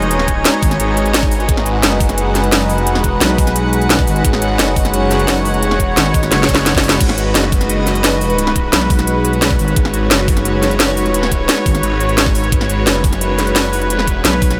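Dark technical drum and bass at 174 BPM in G# minor, mechanical and tense, where a knocking electronic kick and a kit of cracking snare, crisp hats, cabasa and crash drive under a swirling phased, detuned saw bass and a growling FM bass that flickers in briefly at 0.6 seconds before returning from 3.2 to 11.8 seconds, while an airy, evolving chorused pad and an earthy chamber string section pump against the beat in a dreamy cathedral reverb, with a drum fill at 6.3 seconds.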